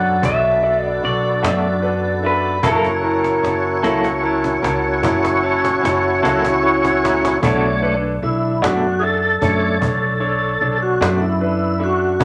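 A slow 12/8 blues at 50 BPM in B minor, this mournful, brooding excerpt sets a slightly broken-up, lo-fi electric guitar melody over a bright concert grand piano, an up-front tonewheel organ with slow rotary speaker and chorus vibrato, thumpy pizzicato upright bass, a snappy cajon whose fill runs from 2.6 to 7.4 seconds, and a dark, clean semi-hollow guitar with tremolo entering at 1.4 seconds, before the organ takes a solo from 7.4 seconds in a wet, large studio reverb.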